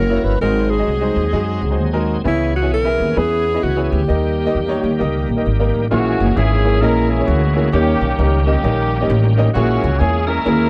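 A dry, close 1970s-style studio sound frames this solemn, fervent stretch of uptempo gospel at 131 BPM with a swung feel, where a breathy, up-front alto saxophone carries the melody until 5.5 seconds over a gritty, shouting tonewheel organ with key click, fast rotary speaker and chorus vibrato, a thumpy, woody pizzicato upright bass on gut strings, and a clear upright piano with long sustain, before a mellow horn section with light vibrato and slapback echo takes up the melody at 5.9 seconds over chords such as G#7, C#m7 and A#m7b5.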